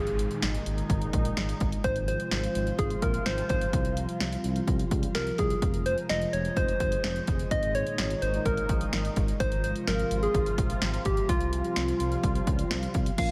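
Synth-pop in F minor at 127 BPM with a driving, cool feel: this excerpt opens with a very quiet electronic downlifter that ends at 1.8 s, while a punchy, tape-warm analog drum machine sits up front, a dark sawtooth-and-triangle bass with ring modulation and vibrato holds the low end, a detuned, resonant sweeping pad sustains chords through chorus and shimmer reverb, a round, gentle FM lead carries the melody, and muted, warbling felt-like synth keys appear only at 13.2 s.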